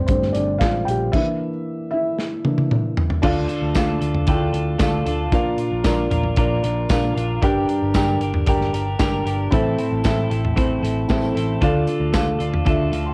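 A lightly reverberant home cassette recording, this driving, dramatic piano-driven pop excerpt opens on a dark, intimate felt-muted upright piano alongside a round, amped picked electric bass and an up-front studio drum kit with bright cymbals and handclaps. A drum fill at 2.2 s leads into the next section, where a twangy, compressed twelve-string electric guitar riff enters at 3.2 s and a jingly tambourine joins in the background at 3.7 s, with the piano, drums and guitar each carrying a cassette-tape tint.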